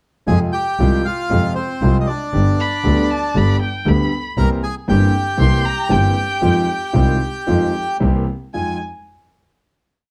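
Dramatic and melancholic, this short, complete tango in F minor moves at 117 BPM in 4/4 with a rubato feel. A reedy, close-miked bandoneon carries the melody from the start, building its tune from motifs in period phrases, partly doubled in octaves and touched by a slapback echo. Beneath it, a clear concert grand piano and a bowed double bass mark the tango rhythm in four with marcato accents; the piano sounds intimate and a little boxy, with audible action noise and long sustain, while the focused bass adds a rich low end with vibrato. At 2.6 seconds a distant, expressive violin enters high above, filling the melody's rests with answering phrases full of vibrato and portamento. The harmony passes from Fm through G and C7 to Fm7 before the piece settles on a closing Fm7 chord at 8.5 seconds, all set in a moderate club reverb with a dark production.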